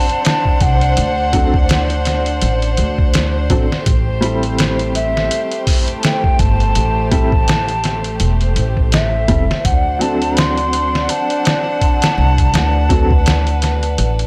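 Hypnotic and melancholic, this trip hop piece sets a hollow, airy jazz flute melody with tape echo over a dark, softly bowed violin section and a boxy upright piano with audible action noise, whose tremolo-laden accompaniment carries 12-bit sampler grit and tape echo until it drops out at 13.1 seconds. Up front, a compressed, pitched-down sampler-style drum kit with a thumpy kick is joined at 0.6 seconds by a woody, growly pizzicato upright bass with tube saturation, as the harmony moves from D7 to Am7 and back. Swung sixteenths and a small, dry room recorded on gritty hardware give the track its lo-fi feel.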